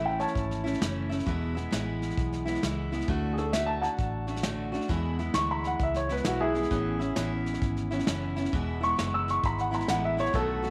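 Heartfelt and easygoing, this swung honky-tonk and classic country fragment features a woody, up-front upright piano soloing throughout over picked steel-string dreadnought acoustic guitar, a dark, round, foam-muted vintage electric bass and a soft brush drum kit with a tight kick that enters at 0.2 s, all set in a small room with a wet spring reverb as the chords move through A, E, D and Aadd9.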